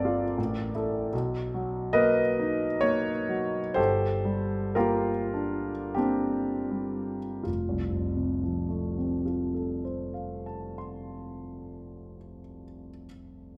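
Impressionist classical solo piano in 3/4 unfolds with a luminous, hazy mood and a free, rubato feel, the pulse slowing down over the first 7.5 seconds before a new section arrives. A warm concert grand sits up front with an intimate, natural tone, deep bass, and audible action noise, ranging from low F1 up to C6. Moderate recital hall reverb surrounds the instrument as the harmony drifts through Bmaj7 and Gm11 toward F in this fragment cut from a longer piece.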